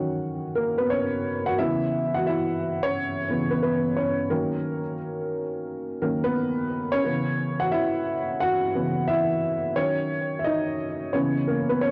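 At 88 BPM in 4/4 with a 65% 16th-note swing, this short hip hop fragment, cut from a longer piece, rests on a lone upright piano in C# dorian, drifting between D#m7 and C#m7 across its 11.9 seconds. The piano sits up front, dark and woody, slightly detuned, with audible action noise and the worn softness of cassette tape, a low-pass filter and tape echo. Light reverb and a small-room ambience give this home cassette recording an intimate, nostalgic and reflective mood.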